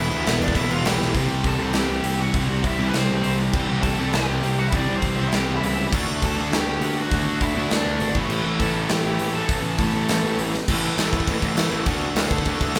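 Opening on E minor, a rebellious, upbeat 202 BPM punk rock cut from a longer piece sets an overdriven lead guitar melody over riffs from a bright distorted guitar, a warm sludgy guitar and a very quiet double-tracked fuzz guitar, along with a growly fuzz bass, joined at 0.1 s by an up-front big rock kit with punchy kick; after a drum fill it drops into half time from 1.2 s through C, D and A chords, and the lead stops at 10.4 s while the riffs, bass and drums carry on in a live room's moderate reverb.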